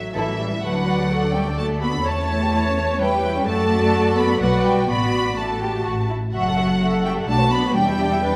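Spirited and graceful, this brief cut from a longer classical-period movement for string orchestra moves at a quick pace in triple time. A close, focused violin section carries the melody up front, its vibrato lending a rich sheen high in its register. Beneath it, a second violin section sounds dark and woody from a distance, its soft attack shaping a supporting line, while a smooth, even viola section fills in the accompaniment. The cellos give the bass a lush, focused body, joined by a double bass section whose dark, smooth low end keeps the foundation steady. Harmonies pass through D, A7/E, Bm and F#m7 before settling on Em7 near 7.8 seconds, all set in the gentle bloom of a recital hall.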